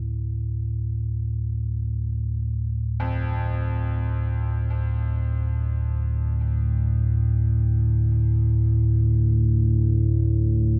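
Steeped in a vast, echoing cathedral reverb, this dark, ominous ambient drone fragment in free time and D minor, tuned to A4 = 441 Hz, rests on a deep, rumbling drone of triangle and sawtooth tones that sits up front with a slow attack and long release, while from 3.0 seconds a clear, worn grand piano with short sustain gradually fades in, its faint arpeggios trailed by delay and shimmer reverb.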